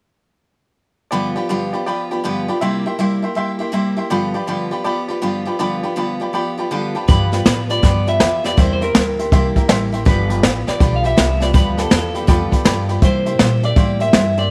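A swung 161 BPM pulse in 4/4 drives this rollicking, rowdy rockabilly fragment in G mixolydian, opening on a brilliant upright piano with audible action noise and a full-bodied, up-front picked steel-string acoustic guitar with finger squeak, trading between G7 and C7. After a piano fill at 6.5 seconds, the new section at 7.1 seconds brings in a twangy, slightly broken-up electric guitar melody with tape echo, a woody, thumpy pizzicato upright bass on gut strings, and a prominent brushed drum kit with a boomy kick and medium-tuned snare. Light reverb lends the whole a small-room intimacy.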